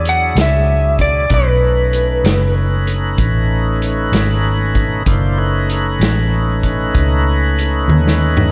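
A dark, slightly broken-up electric slide guitar leads from the start of this swaggering slow blues fragment in 12/8, playing a brief compressed melody with a slapback echo before dropping out at 2.5 seconds. Beneath it, an overdriven tonewheel organ holds thick, gritty sustained chords with audible key click and a slow rotary speaker, moving from E9 to B9 at 1.3 seconds. A foam-muted fingered electric bass sits up front with a round, amped tone. A vintage acoustic drum kit plays hi-hat, kick, snare and toms, with a punchy kick and medium-tuned snare in a pumping small room with a rolled-off top, and it closes the passage with a fill from 7.9 seconds. The rollicking, straight feel comes across with a big arena sound, framed by moderate scoring-stage reverb.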